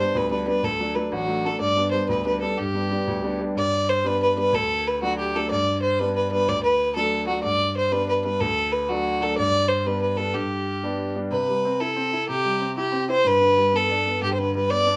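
A single bowed fiddle leads this cheerful Celtic jig in 6/8, its reedy, gut-string tone sitting up front with a smooth top as it carries the melody in a fairly narrow middle register. A grand piano plays accompaniment throughout, brilliant and vintage in character with a long sustain, also placed close and up front but a little lower in level than the fiddle. The harmony rocks mostly between G and D, giving the tune a bright, buoyant lilt. At 11.3 seconds the music moves into a new section, opening on a C chord before settling back to G at 13.3 seconds. A moderate small-room reverb adds a touch of space, and the high end is gently rounded off. It is a short cut from a longer piece.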